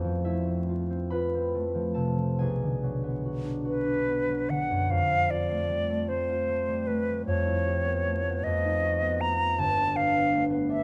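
Dreamy and pastoral, this short impressionist classical duo for flute and harp drifts in a rubato 6/8, with dotted-quarter pulses around 45-54 BPM and a floating F Lydian colour. The concert harp opens alone, its thumb-plucked strings ringing with a warm acoustic glow across a broad span from G1 to B5, moving through chords such as Fmaj7, Bm6 and later A9/F and Gadd9. At 3.7 seconds the bright concert flute enters with the melody, airy and expressive, its soft attack and vibrato caught up close. The two parts sit up front together, the flute singing within a narrow upper register above the harp's resonant bed. A moderate recital hall reverb adds a gentle halo, while detailed close microphones and a vinyl crackle give the sound an intimate, slightly nostalgic texture. Cut from a longer piece, it ends at 10.8 seconds, partway through a second section.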